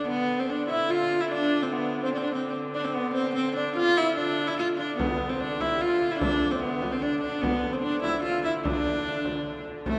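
Medieval dance in a straight 3/4 at 147 BPM, set in D dorian with a mysterious yet driving mood, cut from a longer piece. A clear, pure viola da gamba carries the melody up front, its bowed, fretted tone ringing and floating with a soft attack and light vibrato. Alongside it, a concert harp, fingerpicked and sitting in the background, and a very quiet, close-miked alto saxophone with classical-style vibrato both play second lines. A rich hurdy-gurdy holds a drone on D3, its wheel-bowed sound nasal, earthy and boxy with an airy bow. At 5.0 seconds a deep, distant frame drum enters, sounding large in its room, while a wet church reverb with a long 3.5-second tail surrounds the ensemble.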